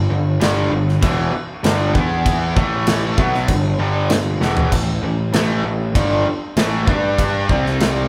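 Two brilliant, overdriven electric guitars open this anthemic hard rock excerpt at 0.0 seconds, picking a powerful riff in straight 4/4 over power chords that move among G5, E5, A5 and C5. Beneath them, a fuzz-laden picked electric bass adds a warm, driving low end through its overdrive. At 0.4 seconds a big acoustic rock kit joins, sitting up front with a thumping kick, a medium-tuned snare, crash and splash cymbals, and toms. At 4.4 seconds the drums break into a short fill before the riff carries on. The band sounds as if it is playing live together in one large studio room, with a generous reverb giving the cut a spacious, roaring presence.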